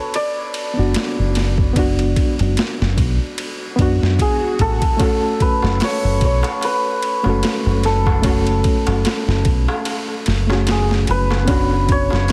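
Heavily compressed with a radio-like squeeze and little reverb, this melancholic, hypnotic trip hop excerpt pairs a bright, shimmering santur melody with a reedy, worn, slightly out-of-tune electric piano carrying tremolo, both bathed in tape echo. A gritty, pitched-down boom bap sampler kit with a thumpy kick and high-tuned snare sits up front with overdrive, and a dark, round fingered bass enters at 0.8 seconds to anchor the swung groove. An electronic swell appears in the background at 3.6 seconds, and a crisp metal-shell darbuka joins distantly from 5.0 seconds.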